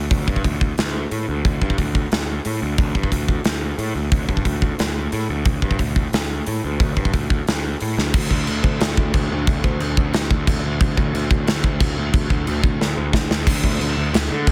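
A dense, heavily limited modern master with a dry sound carries this aggressive, dark heavy metal passage at 179 BPM in a straight 4/4. A growly, fuzz-soaked picked electric bass, overdriven and up front, opens at 0.0 s and is joined almost at once by a big, roomy acoustic rock drum kit with a punchy kick, medium-tuned snare, hi-hat, and bright china and crash cymbals. Drum fills at 8.0 s and from 12.8 s lead into new sections before the piece breaks off.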